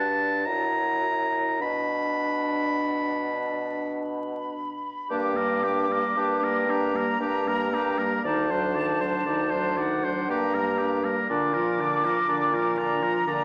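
A clear, up-front oboe carries the second line just beneath an airy silver flute melody with vibrato and a soft attack, in this elegiac, yearning slow romantic movement for wind quintet. Set in 3/4 at 50-62 BPM with rubato, it moves from B minor into G minor at 5.1 s, while a smooth clarinet and a mellow French horn supply accompaniment over a vintage-toned bassoon bass. The recital hall reverb is lush, and vinyl crackle gives the sound an aged surface, in a passage cut from a longer piece.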